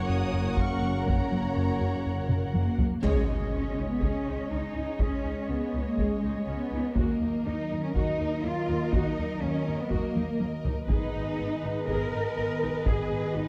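A hybrid orchestral and electronic film score cue, cut from a longer piece, moves at 122 BPM in a straight 4/4 with a relentless, tense mood and a dark production set in a moderate scoring-stage reverb. Up front, an expressive cello section carries the bass beside a double bass section with a soft attack, while a focused viola section and a bowed violin melody with a smooth top sit in the background, and a second, distant violin line adds a lush, even layer. A hollow, flute-like pad with chorus holds sustained chords throughout, and a French horn section with light vibrato supports the opening chords until 2.8 seconds. A rubbery, bouncy square-wave bass plays a riff over the first few seconds, and a close, dry taiko ensemble struck with heavy sticks drives the cue from 0.6 seconds, with fills leading into 3.0 seconds and again around 10.2 seconds. At 3.0 seconds a band accent and an electronic impact mark the move into the longer second half, as the harmony travels from Gb through Dbsus2 and Ebm to Abm.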